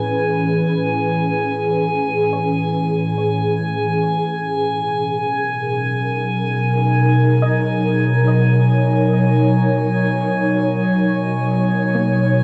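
An airy, detuned pad sits up front in this peaceful ambient excerpt, holding sustained chords that move from Amaj7 to Bmaj9 under a filter sweep, while a dark, round pluck fades in with arpeggios in the background and a glassy texture of drifting overtones hovers on a high G#5, all three bathed in shimmer reverb and cassette tape character, with tape echo on the pluck, inside a small, wet booth of a home recording.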